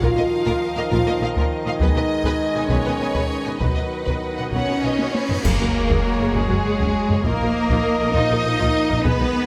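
This triumphant, adventurous cinematic orchestral excerpt in 6/8 opens with a vibrato-laden violin section carrying a focused melody over a clear second violin line, lush violas, rich sustained string chords, mellow distant French horns, bright trombones, smooth cellos and double basses, all driven by hard-stick taiko. At 1.8 seconds, bright cymbals, clash cymbals and concert bass drum join. A huge, dark, very quiet cymbal swell rises from 4.9 seconds alongside a drum fill from 5.0 seconds, and its impact lands at 5.5 seconds with a full band accent. A solo trumpet with a smooth top adds stabs from 5.4 seconds, all in a close, detailed sound with light reverb.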